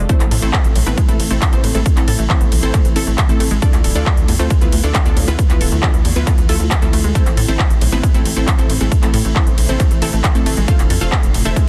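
Detuned, lush unison plucks open this euphoric, emotional uplifting trance excerpt in A minor at 136 BPM: a full-bodied, wave-folded lead carries the melody through tape echo while a background arpeggio line with a noise layer and ring modulation ripples through dub echo, both pumping against the sidechain. A tight, driving sawtooth sequencer bass sits low in the mix, and from 0.1 s an up-front, overdriven electronic kick hits hard alongside a big-room kit of handclaps, crisp hi-hats and ride cymbal. The chords move from Am to Dmadd9, back to Am and on to F, all in a dry, dense and heavily limited modern master.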